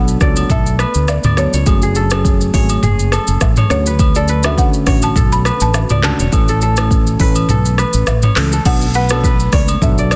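A lightly swung sixteenth-note groove at 103 BPM drives this joyful, breezy afrobeats excerpt in 4/4. An up-front, produced electronic afro-pop kit supplies a deep kick, smooth hi-hats, rim clicks, shaker, handclaps, toms and crash, with soft clipping on the snare, while a round, dark fretless electric bass with analog chorus sits equally high in the mix. Agogo bells and woodblock add a compressed, saturated layer in the background. A crisp, ringing fingerpicked kora riff and a woody, buzzing marimba melody share tape echo, over a clean tine electric piano accompaniment with analog chorus and a very quiet, glassy FM pad that enters at 0.5 seconds with ethereal sustained chords. The harmony moves through Bm7, F#madd9, Dmaj7 and A, and the kick drops out from 7.5 to 8.7 seconds before a new section returns to Bm7, all within a dense, heavily limited modern master with digital ambience.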